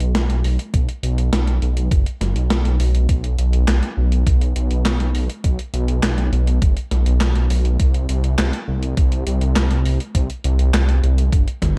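Synthwave at 102 BPM in a cinematic, nostalgic mood, this dark excerpt is cut from a longer piece and built on a thick, detuned saw bass that sits up front with chorus and sidechain pumping, moving between F#1 and C2 from the start. A gated 80s digital drum machine supplies handclaps, hi-hat, toms and a snare drenched in gated reverb, while a thumpy, tape-warm electronic kick enters at 0.7 seconds. The production stays fairly dry, closing with a drum fill at 11.6 seconds.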